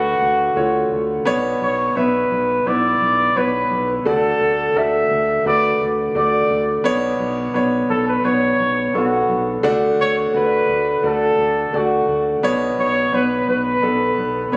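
Captured on a phone in the room, this recording carries a moderate echo-chamber reverb with a 2.3-second tail and a compressed sound. It is a hopeful pop excerpt in D major at 86 BPM in a straight 4/4, cut from a longer piece. A mellow, punchy trumpet carries the solo melody with scooped notes, its tone roomy and distant. A clear, natural grand piano accompanies it throughout, moving between D and B minor add9 chords. Beneath them, a round, deep analog bass blends sawtooth and sine tones with a fast attack and dark sustain, sitting low in the mix for the full 14.6 seconds.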